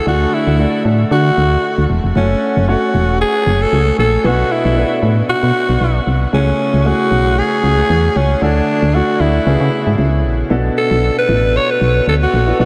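Dramatic and nostalgic, this 1980s-style pop passage moves at 115 BPM with a light sixteenth-note swing, as a breathy, raspy alto saxophone with vibrato carries the up-front solo melody through delay over a concert grand piano whose open, long-sustaining tone is bathed in lush chorus and a punchy, round FM bass with a fast attack, all soaked in a huge, dreamy reverb as the harmony drifts from D through F#m, Bm and Amaj7 before turning toward Bm7 at 10.5 s.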